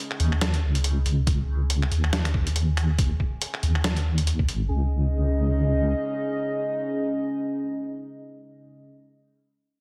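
Deep dubstep at 140 BPM with a swung, half-time feel: brooding and heavy, cut from a longer piece and opening on a C#sus2 chord. A dark, wave-folded analog pad with lush chorus holds sustained chords throughout, under a filter sweep until 4.7 s, while a deep, detuned wobble bass sits up front. Meanwhile, a gritty, pitched-down sampler kit of finger snaps, hi-hat and snare enters almost at once, joined by a thumpy electronic kick from 1.3 s, with the drums re-recorded in a small room and the whole mix given a heavily compressed radio sound with light reverb.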